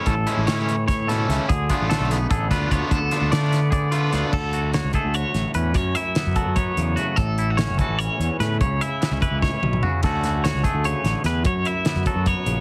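A fuzzy, round electric bass sits up front in this wistful, bright math rock and midwest emo excerpt in 7/8 at 295 BPM, joined by a clean fingered twangy guitar, picked twangy arpeggios shimmering with harmonic tremolo, a loose indie kit with dark cymbals, fat snare and a drum fill at 9.4 seconds, and a biting, double-tracked overdriven riff that stops at 4.3 seconds, as chords such as Amaj7, Dmaj7 and F#m7 pass under light reverb and a heavily compressed radio sound.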